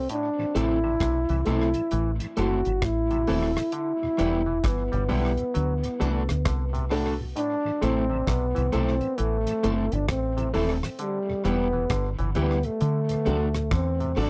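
A breathy, whispered trombone carries the melody from the first moment, sitting up front with a soft attack, gentle vibrato and tape echo, while a deep, round dub bass plays fingered lines beneath it. This is a laid-back, meditative roots reggae groove in A dorian at 66 BPM in 4/4, with a swung sixteenth-note feel, cut from a longer piece. A damped 1970s drum kit with a tight kick, hi-hat and rim click joins at 0.1 seconds with a rolled-off top and its own tape echo, alongside a stringy, nasal, overdriven clav playing arpeggios. A piping tonewheel organ with key click, chorus vibrato and a slow rotary speaker sits in the background from 0.4 seconds, then a woody upright piano adds stabs with long sustain. A dark, picked electric guitar on the edge of break-up enters at 0.6 seconds with vibrato and tape echo. The chords cycle through Am, Em and D twice, and the close, dry studio sound carries light reverb with a 1970s character.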